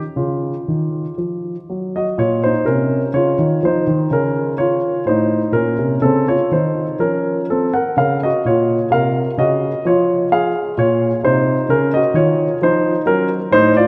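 Solemn and grave, this brief classical fragment from a baroque-style suite movement in triple metre features a dark, mellow grand piano playing solo and up front with a loose rubato feel, its harmony moving from Dbadd9 through Ebmadd9/F into a shift at 2.2 seconds that settles on Bb minor and F7/A, all bathed in the long, wet reverb of a church.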